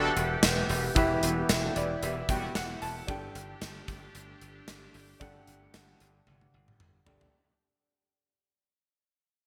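This short, uplifting and nostalgic 1980s-style pop fragment at 113 BPM in G major sits slightly below standard pitch, tuned to A4 = 437 Hz, with a light 16th-note swing, and it fades out across its whole length. A baby grand piano with an open tone and short sustain carries the accompaniment and plays a fill from 1.5 seconds, while a glassy, punchy slap bass holds the low end. Up front, a polished gated drum kit with a tight kick, medium-tuned snare, hi-hat, tambourine and toms sounds in an airy stone room and closes with a fill from 6.3 seconds. In the background, a swirling, detuned sawtooth pad with phaser and chorus sustains the chords, and mellow, round synth brass with a filter sweep adds stabs until 2.5 seconds. The harmony moves from Emadd9 to Gsus2, and the bright digital production is bathed in a lush hall reverb.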